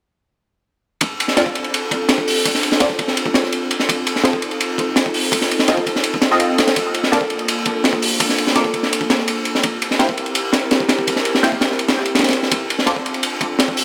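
A crunchy breakbeat drum kit opens at 1.0 s, gritty and saturated with a tight kick, high-tuned snare and dark, rolled-off cymbals sitting up front, driving this dark, atmospheric drum and bass excerpt at 167 BPM in D minor. An airy, breathy pad of detuned sawtooth and triangle tones with a noise layer warbles in on slow-attack chords under a filter sweep, while a nasal, band-passed chord stab with ring modulation, phaser and dub echo punctuates the Dm7, F7, Bbmaj7 and C7 progression. A lush hall reverb wraps the whole mix in a moody, spacious glow.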